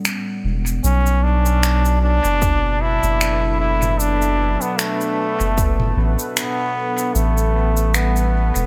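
A bright, up-front solo trombone carries the melody in this hazy, meditative ambient dub excerpt, played with light vibrato in a classical style and trailed by dub echo from 0.8 seconds. Beneath it, a soft, round sub bass holds the low end, while a warbly, lo-fi pad sustains dark, nostalgic chords through chorus and its own reverb. An organic electronic kit of finger snaps, shaker and toms, re-recorded in a large room and sent into dub echo, gives the 4/4 groove a gentle swing. A deep, layered electronic kick joins only between 2.4 and 5.8 seconds. In the background, a bubbling, detuned sawtooth texture steps through random resonant filter changes, washed in chorus and reverb, as the harmony moves from A7 to Bm7 and back to A7 under a light overall reverb.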